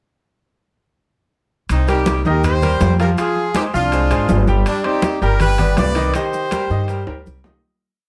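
A driving, danceable salsa groove in straight 4/4 starts at 1.7 s, with the thumpy, woody upright bass playing a dark pizzicato tumbao on gut strings that anticipates the chords. Behind it, thick-skinned congas mix slaps and open strokes with hard hands, close and dry. Ringing metal-shell timbales play a shell pattern and bell in a live room, and grainy, mellow maracas shake softly, all three sitting in the background. The punchy, close-miked horn section comes up front with a brilliant, pop-style ensemble sound and light vibrato, playing call-phrase motifs partly doubled in thirds. From 1.9 s a polished, present grand piano plays a short-sustained montuno in octaves over a Cm7, Fm, Gsus4, G and back to Cm7 progression, all under light reverb. This short complete piece begins fading at 6.1 s, closing on a drum fill.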